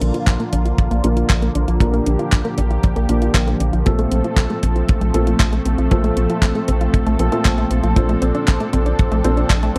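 A dry, close studio sound with a 1970s feel frames this danceable, playful italo disco excerpt in Bb major at 117 BPM, moving from Bb to F/Bb at 3.9 seconds and Dm7/Bb at 8.0 seconds. A round, deep analog bass and a tight acoustic kick entering at 0.3 seconds sit up front, while a gated, overdriven drum machine adds handclaps and hi-hat. A lush, detuned unison pad with chorus and phaser holds sustained chords, a bright sawtooth pluck with tape echo sits in the background playing arpeggios, and a dark, boxy grand piano adds stabs, both pluck and piano carrying filter sweeps.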